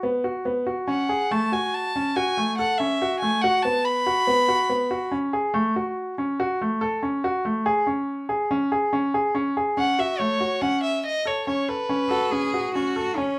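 A reedy, gut-string violin in period style carries the melody of this contemporary chamber piece, entering at 0.9 seconds with light vibrato and sitting up front. Beneath it, a clear, natural baby grand piano plays arpeggios throughout in a restless, hypnotic 5/4 at 142 BPM with a straight feel. The harmony moves through Bsus2, F#m, B5 and C#5 in F# minor, then shifts to F# dorian at 9.8 seconds as the violin comes back in. At 12.1 seconds a biting, nasal cello joins with an earthy second line and an airy bow, its boxy tone filling out the final moments of this passage cut from a longer work. A moderate studio reverb lends the small ensemble a sense of space.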